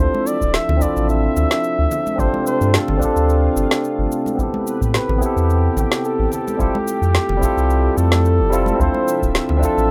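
A mellow flugelhorn carries the melody in a jazz-style solo, with vibrato, scooped notes and a smooth top, set in digital delay and plate reverb. This is a relaxed, smooth sunset chillout excerpt at 109 BPM in 4/4, with a 16th-note swing and chords moving through Dm9, G9sus4, Am9 and Fmaj9 before returning to Dm9. Up front, a barky, clean tine electric piano plays through a combo amp with tape echo and plate reverb, and a low-pass filter sweeps across it for the whole passage. A round, sine-like sub bass with a fast attack sits prominently underneath, while a lush, thick unison pad of detuned sawtooth and square waves, with chorus, holds slow-blooming chords in the background. Ringing, close and dry congas played with hard hands enter at 0.1 seconds, joined by a layered electronic shaker and woody snare and a deep, tape-warm analog kick re-recorded in a large room. The whole has light reverb and the rough feel of a home demo mix.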